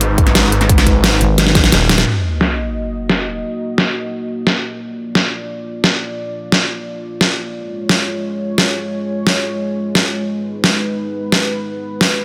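Light reverb and a digital ambience frame this aggressive, futuristic slice of dark technical drum and bass, cut from a longer piece. A dubstep drum kit sits up front throughout, its deep snare and metallic hats overdriven and filtered, while a punchy, overdriven electronic kick drum drives only the opening moments. A snarling distorted saw bass, detuned and resonant with a moving notch, rips through the first 1.2 seconds. A thick, growling FM bass takes over briefly, and a drum fill and band accent lead into an electronic sub drop impact at 2.1 seconds. Beneath it all, a moody analog pad holds sustained chords with chorus and sidechain pumping, its slow attack and long release giving the passage a brooding pull as the harmony moves from Abm through Ebm, Bb and Db before returning to Abm.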